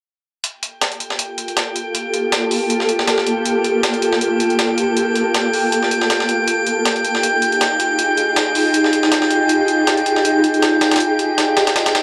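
Raw and atmospheric, this drum and bass and jungle excerpt at 159 BPM opens with a gritty, tape-worn breakbeat kit of hi-hat and snare at 0.4 seconds, joined at 1.0 seconds by a drifting glass-harmonics texture with chorus and reverb on a high G5 and at 1.3 seconds by a blurred, evolving granular cloud pad holding sustained Gm9 and Fm9 chords, all carrying the dry, cassette-tape grain of a hardware recording.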